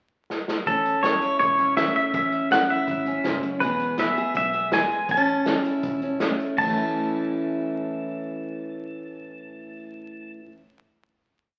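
Heartfelt and sunny, this short honky-tonk and classic country piece opens with a quick drum fill from a distant, roomy acoustic kit played with bundle sticks, its dark cymbals and punchy kick setting up a country two groove. At 0.7 s the pedal steel guitar takes the melody up front, bright, compressed and twangy, played with fingerpicks and shaped by volume swells and slide into motif-based period phrases. Beside it, a full-bodied dreadnought acoustic guitar plays fingerstyle with an alternating, palm-damped thumb, while a foam-muted, round vintage electric bass sits in the background with a two-beat root-and-fifth line and walk-ups. The harmony moves from A to E and back to A before the band settles onto a final chord at 6.6 s, with the drums dropping out moments later. A large, wet studio reverb and the crackle of a very old 78 rpm record give the recording a bygone feel.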